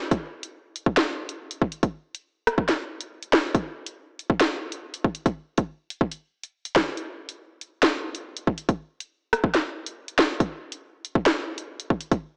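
An electronic drill drum kit opens at 0.1 s with a hard-clipped kick, sharp snare, rim clicks and hi-hats up front, driving a menacing, cold hip hop groove at 140 BPM in half-time 4/4, with a brief break from 7.0 to 7.8 s, all heard through a lush hall reverb and a worn, warbling cassette sound with pitch drift and a small-speaker quality in this excerpt from a longer piece.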